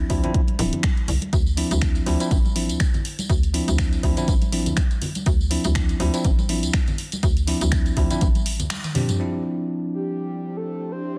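A bell-like tine electric piano plays up-front Dm9 stabs with tape echo and sidechain pumping throughout this deep, warm deep house excerpt, over a hollow, bouncy FM bass with tube saturation and an overdriven, layered electronic kick. A house kit of finger snaps, hi-hat and toms, thick-skinned congas in the background and a jingly, close tambourine fill out the swung groove until the kick drops out at 8.7 seconds for a band accent and a short drum fill. At 9.9 seconds an ethereal, airy pad with ensemble chorus and a soft, breathy flute-like synth lead with vibrato enter alongside the piano in a dry mix.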